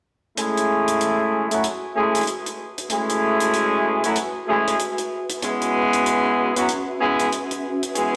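A swung 16th-note groove in 4/4 at 95 BPM drives this gritty, playful glitch hop fragment in F# minor: a dry, dark acoustic hi-hat with a rolled-off top sits in a small room beneath up-front vintage pop-style horn stabs with light vibrato and octave doubling, shaped by delay and a low-pass filter sweep. An ethereal, airy, detuned pad with ensemble chorus fades in softly in the background from 1.7 s, the harmony moves from F#m9 to C#m7 at 5.4 s, and the whole piece rings through the stone reverb of a bare room over a big sound system.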